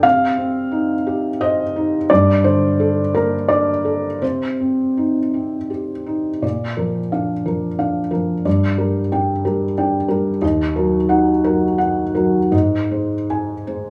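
Hopeful and peaceful, this short neoclassical minimalist piano excerpt moves in an unhurried, rubato 3/4 at roughly 78-94 BPM, in Bb major. A felt-muted upright piano plays alone throughout, soft and mellow with audible action noise, sitting up front and close in a moderate, large studio reverb that adds a sense of space around the intimate room sound. After opening on C minor harmonies, the music shifts at 6.4 seconds to a second section that passes through Bb, G minor, Eb minor and Ab before the cut.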